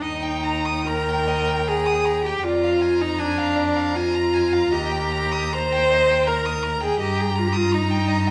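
In a flexible, rubato three-four, this serene, lyrical slow romantic movement for string quartet, cut from a longer piece, sets a rich first violin carrying the melody from a distant place in the background against an intense, clear second violin line with a smooth top, while an even, up-front viola supplies close accompaniment and a focused cello holds the bass, all four bowed with vibrato over chords moving from Eb through Bb7/F back to Eb and Eb/G in a wet stone room.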